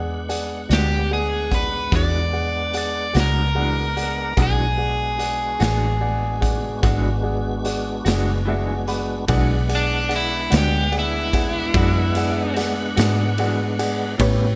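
This swaggering, gritty slow blues in 12/8 opens on an E9 chord, with warm grand piano, a full tonewheel organ and a dark, round, foam-muted electric bass all sounding from the start at 49 beats per minute. The organ holds sustained chords through light overdrive, chorus vibrato and a slow rotary speaker, while the up-front bass anchors the low end. A raw garage drum kit enters at 0.3 seconds with hi-hat, punchy kick, medium-tuned snare and ride cymbal, its saturated sound pumping in a bright stone room with a rolled-off top. At 0.7 seconds, a slightly broken-up, compressed electric guitar through a small old amp adds lo-fi tremolo accompaniment in the background, and a biting, picked overdriven guitar carries the melody up front. The piano plays a fill leading into a second section at 9.3 seconds, where the overdriven guitar takes a solo over light reverb, and the excerpt ends mid-piece.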